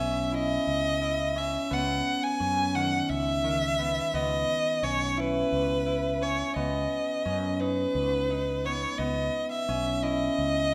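Set in the moderate reverb of a recital hall, this short fragment of a contemporary instrumental piece moves in an urgent, hypnotic 7/8. A warm, smooth solo violin carries the melody up front with vibrato, while a concert harp supplies bright, ringing fingerpicked arpeggios. Beneath them, a mellow fretless electric bass adds a dark, round low line, and all three parts play throughout the 10.7 seconds.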